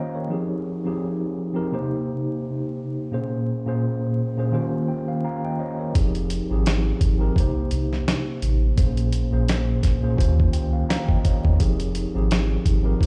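Swung sixteenths in 4/4 carry this dark, tough boom-bap hip-hop excerpt, where a mellow, clean tine electric piano opens alone with a brief fill and cycles through Fm9, Cm7, Bbm9 and Eb13 until a gritty, compressed sampler-style drum kit with a thumpy kick and a round, deep analog bass enter at 6.0 seconds, the mix steeped in large studio reverb, vinyl crackle and the sound of a big system playing in a bare room.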